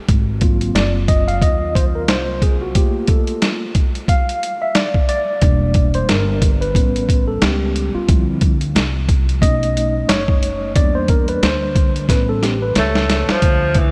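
A gritty, compressed boom bap drum kit sets a swung, head-nodding groove in 4/4, its thumpy kick and medium-tuned snare sitting up front beside the hi-hat, and a drum fill arrives at 12.1 seconds. This mellow, smoky jazz-hop excerpt is cut from a longer piece, and a woody pizzicato upright bass anchors the low end throughout. A clean tine electric piano, heard through its built-in speakers, carries a solo across most of the passage, moving through lush extended chords such as G#13, Gm9/A, Em7b5 and Dm11 with A7 and B7 turns. Near the close, at 12.8 seconds, a breathy tenor saxophone slips in with a whispered, subtone voice, soft attack, scooped notes and vibrato, sounding distant and roomy under a diffuse ambient delay. Light studio reverb wraps the mix in a mellow, smoky air.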